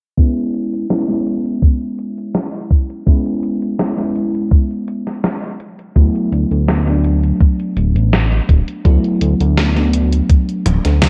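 Vaporwave at 83 BPM in 4/4, this nostalgic, dreamy excerpt opens on a soft, round FM electric piano bathed in lush chorus and tape echo, playing E6/G# before shifting to D69 at 5.6 seconds, over a thumpy, tape-warm electronic kick and a gated 80s digital drum machine whose hi-hat, snare and toms carry gated reverb and a filter sweep. A glossy chorused synth bass with pulse-width and ring-modulated tones enters at 6.0 seconds, and a drum fill arrives at 10.7 seconds, all set in light reverb and a digital ambience.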